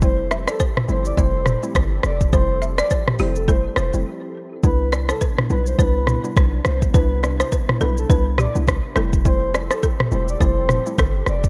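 Romantic and breezy, this afrobeats excerpt moves at 104 BPM in 4/4 with a loose swing on the sixteenths, drifting from Fmaj7 to Cmaj7 at 4.6 seconds and back to Fmaj7 at 9.0 seconds. An electronic afro-pop drum kit sits up front with a deep kick, dark hats, rim click, shaker and toms, joined by a punchy, heavy 808-style bass built from a sine tone with a noise layer, fast attack and decaying notes. A breathy, flute-like synth lead carries the melody with a soft attack, vibrato, chorus and tape echo, while a woody, round mallet-like FM pluck with a vintage, warbling character supplies mellow accompaniment. A balafon enters at 0.3 seconds with a buzzing, close-miked riff struck with hard rubber mallets and touched by tape echo, and a hollow, detuned pad holds dark sustained chords in the background under an ensemble chorus. A brief break falls between 4.1 and 4.6 seconds, and the whole has the rough feel of a home demo mix with light reverb and digital ambience.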